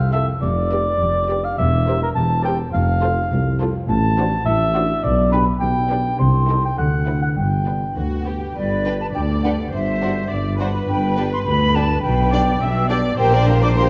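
In a straight 2/4 at 104 BPM, this magical, playful cinematic excerpt moves from F major into G major at 3.9 s, with a dark, distant cor anglais up front until 8.0 s, a very quiet, ringing concert harp playing arpeggios, a dark tuba, a focused double bass section and a warm cello section sharing the bass, a lush violin section carrying the background melody over a close second violin line, a smooth, even viola section in accompaniment, and an airy, bright flute adding a second line from 8.6 s, all set in a moderate scoring-stage reverb.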